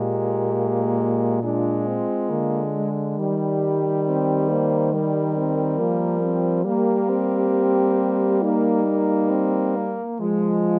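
An up-front French horn with vibrato anchors the bass beneath a dark, smooth horn melody, a warm second horn line with light vibrato and a clear, vintage-toned horn accompaniment in this serene, tender classical passage for horn quartet in 4/4 with a rubato feel, all four sounding together for its 10.8 seconds, cut from a longer piece and captured with close, detailed microphones and light reverb.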